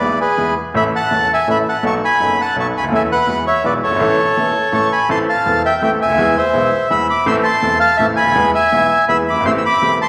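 Passionate and playful, this short excerpt from a longer tango moves at 165 BPM in 3/4, though the rubato feel lets the time breathe and stretch. A reedy bandoneon carries the melody up front, singing across a range from G#4 to E6 for the full ten seconds. Beneath it, a bright upright piano with a woody, vintage character supplies the accompaniment from low E1 up to A4, also close and present in the mix. The harmony begins in A major, passing through chords like B7 and Eadd9, then turns to A minor at 5.1 s, alternating Am and E before settling on Am7. A generous scoring-stage reverb with a 1.9-second tail gives the sound the spacious bloom of a church or concert hall. The tuning sits slightly low, at A4 = 437 Hz.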